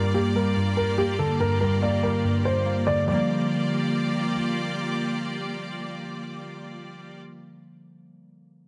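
A dense, heavily limited modern mix with light reverb and a small-room ambience frames this dark, eerie hip hop fragment in a half-time feel, cut from a longer piece and resting on a Gm7 chord. A mellow baby grand piano carries the melody until 4.3 seconds, its intimate tone marked by audible action noise, short sustain and a touch of delay. Up-front, warbling lo-fi synth keys with a nostalgic square-and-sawtooth warmth and chorus play the accompaniment through 8.7 seconds, while a clear symphonic string section holds bowed chords with light vibrato and a smooth top until 7.2 seconds.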